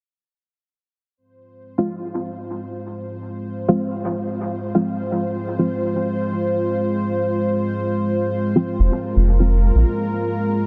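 Techno with a hazy, deep mood, swung lightly on the sixteenths and held on a single F minor chord, heard as a fragment of a longer piece. A deep, mellow chord stab arrives first at 1.8 seconds, its soft, detuned tone coloured by ring modulation, chorus, phaser and dub echo while a filter sweep runs across it. A dark analog pad fades in slowly just after it, a moody, full-bodied sawtooth layer with a sub octave that evolves and lingers on a long release. The stab drops out, then returns briefly near 8.6 seconds, just before a round analog bass enters at 8.8 seconds with a fast attack and sustained, sine-like depth. A huge ambient reverb hangs over the parts, and the dense, heavily limited master keeps them close and up front.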